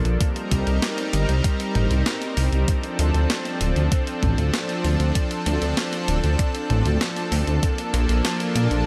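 A light reverb wraps this short, cinematic and nocturnal synthwave fragment, cut from a longer piece, in a gentle sense of space. A lush unison pad built from detuned sawtooth and square waves sits up front, holding bright, full-bodied sustained chords with a slow attack, long release and chorus, moving from Cm7 to Dm7 and reaching Bbmaj7 at 7.6 seconds. Beneath it, a dark detuned saw bass rumbles deep and saturated, its beating unison tone pumping against the sidechain. A clean 12-bit digital drum machine supplies hi-hat, a medium-tuned snare and toms with a tape-warm, sampler-style character and small room ambience. An electronic kick drum adds a thumpy pulse from 0.2 seconds until 7.8 seconds.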